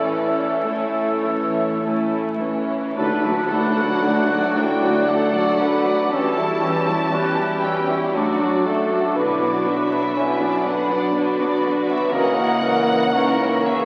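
In a rubato 3/4 at 49-63 BPM, this serene passage from a slow romantic orchestral movement in D major sets a smooth, vibrato-laden violin section on the melody over a second violin line, a dark clarinet and mellow cor anglais, with a viola section, bassoon and distant French horn section chords, ringing harp arpeggios, and lush cello and clear double bass sections beneath, while an airy flute joins at 3.0 s and a very quiet tam-tam sounds from 3.0 to 7.1 s, the whole heard through scoring-stage reverb and the crackle of a very old 78 rpm record.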